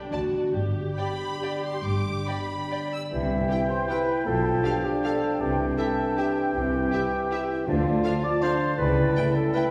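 A lush viola section and a ringing, thumb-plucked harp open this festive, elegant orchestral ballroom waltz, joined at once by bowed violins carrying a smooth, vibrato-rich melody above a more distant second violin line, with cellos and double basses grounding the bass in a flexible, rubato three-beat sway. From 3.1 s the harmony shifts and the woodwinds enter: a clear oboe, an airy, hollow silver flute and a soft-attacked clarinet add second lines, a bassoon fills the accompaniment, and a dark, tight horn section holds sustained chords. A very quiet timpani stroke with hard mallets sounds at 7.7 s, all set in the reverberant glow of a recital hall in this passage cut from a longer piece.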